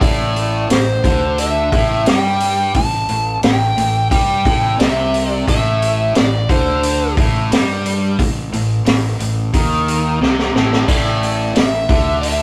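A rough rehearsal-room recording with moderate small-room reverb frames this gritty, smoky blues rock power trio excerpt with a southern rock lean, moving at a straight 88 BPM in A minor over a steady Am. A dark, overdriven slide guitar carries the melody above a bright, double-tracked riff on a second overdriven guitar, while a growly fuzz bass with punchy, fingered tone anchors the low end. The vintage drum kit sits up front with a punchy kick, a high-tuned snare and a rolled-off top on hi-hat and splash cymbal, dropping a fill from 10.2 to 10.9 seconds.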